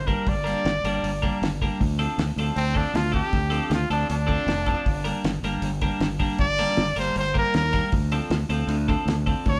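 A straight four-beat groove from a cloth-damped, thuddy drum kit with a fat snare and tight kick drives this cool, bittersweet indie rock passage, where a growling overdriven fingered bass and a clean, twangy twelve-string electric guitar riff support a punchy, up-front trumpet solo with pop-style vibrato, all ringing in a moderate stone room as a band playing live.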